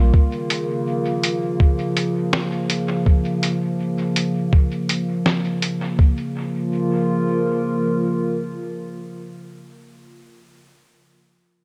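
Bathed in light digital ambience, this hazy, meditative ambient dub fragment rests on a warbling, detuned pad of square and triangle tones, dark and nostalgic with chorus and its own reverb, holding sustained chords from the start through 9.7 seconds, while a muffled, thumpy, pitched-down electronic kick drum sits up front in a gently swung groove until 6.2 seconds beside a compressed, tape-warm lo-fi sampler-style kit whose hi-hat and medium-tuned snare carry dub echo before dropping out at 5.8 seconds.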